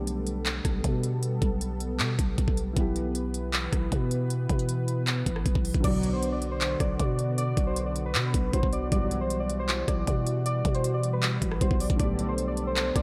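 This trap-flavoured hip hop excerpt moves at 156 BPM with a half-time feel in B phrygian, carrying a melancholic, brooding mood. From the start, a growling, buzzy 808-style bass sits under a smooth, detuned analog pad with chorus, while a dark, boxy baby grand piano with audible action noise stays in the background. The trap drum kit enters at 0.1 seconds, up front and overdriven, with a knocking kick, crisp hi-hats, handclaps, rim clicks and crash cymbal, re-recorded in a small room. The opening stretch is a break, and at 5.8 seconds a warbling, nostalgic lo-fi synth keys melody arrives with chorus and delay, as round, brassy synth stabs with vibrato sound briefly at 5.8, 8.9 and 12.0 seconds. Harmony shifts from Gadd9/B and Em to Bm and Emadd9/B before returning to Gadd9/B, all under a light reverb.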